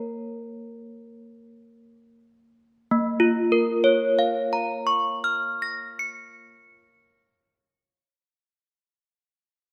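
Solemn and wintry, this classical handbell tune in three-four, cut from a longer piece, is carried by solo desk bells that sound clear, clanky and slightly out of tune, set up front in a moderate concert hall reverb and slowing down over the opening 2.9 seconds.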